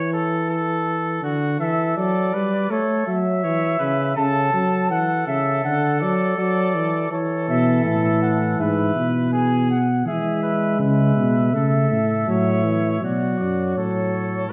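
A wet recital-hall reverb and a layer of vinyl crackle surround this joyful, stately classical canzona for brass ensemble, a short portion cut from a longer piece in a straight 4/4 with an imitative design. The euphonium, cornet and tuba share a mellow tone, while the trumpet stands apart as clear and punchy. Up front, the euphonium plays the accompaniment from the opening with light vibrato and a smooth top, as the trumpet, distant and roomy, carries a second line with vibrato. The cornet takes the melody at 1.6 seconds, singing high above the ensemble with its own vibrato and a similarly distant, roomy placement. At 7.5 seconds the tuba joins up front with a soft attack and a smooth top, grounding the texture as the harmony moves among D, A and E chords. A new section begins at 13.0 seconds on a B minor chord just before the cut.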